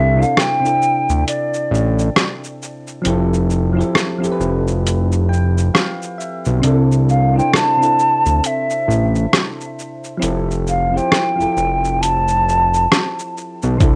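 This lo-fi hip hop excerpt drifts along at 67 BPM in 4/4 with a 16th-note swing, its cosy, nostalgic mood set by a slow alternation between C69 and Fmaj9, tuned slightly sharp to A4 = 445 Hz. A mellow, hollow jazz flute carries the melody up front between D5 and A5, airy with vibrato, a crisp chiff on each note and rolled-off highs, dressed in cassette tape colour and plate reverb until it stops at 13.4 seconds. Soft, round electric-piano-like synth keys accompany with gentle, decaying tones softened by chorus, and they step forward with a fill from 4.8 to 6.6 seconds. Underneath, a fat analog bass sits up front in the low register, thick and saturated with detuned sawtooth character and a filter pluck. A gritty, compressed boom bap sampler-style kit, pitched down, comes in at 0.2 seconds with a thumpy kick, hi-hat, rim click and shaker. A moderate studio reverb and the home-cassette character of the recording give the piece an intimate, worn feel.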